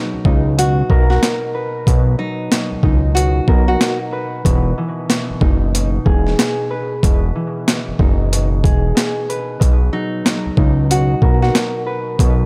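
In a small, echo-heavy room, this soulful boom-bap hip-hop excerpt at 93 BPM with a swung 16th feel in B major moves through Bmaj7 and Emaj7: a gritty, pitched-down, overdriven sampler-style drum kit with a thumpy kick and high-tuned snare sits up front beside a fat, detuned sawtooth analog bass with a filter sweep, while a warm, ringing, thumb-plucked concert harp on cassette tape and analog delay carries the accompaniment and a bright, fingerpicked nylon-string guitar, with audible finger squeaks, plays the melody until 4.0 seconds and again from 9.9 seconds.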